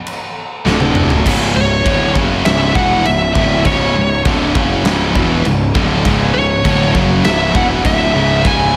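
A big rock drum kit with a fat snare and punchy kick opens this epic, relentless heavy metal excerpt at 100 BPM, playing half time with a fill as three picked rhythm guitars (one high-gain with slapback echo, one sludgy, one double-tracked) and a growly fuzz bass come in around 0.6 to 0.7 seconds, driving a riff from D5 to C#m; at 1.6 seconds an up-front high-gain lead guitar joins above them, singing from C#5 to G#5, all set in a big arena sound with lush hall reverb.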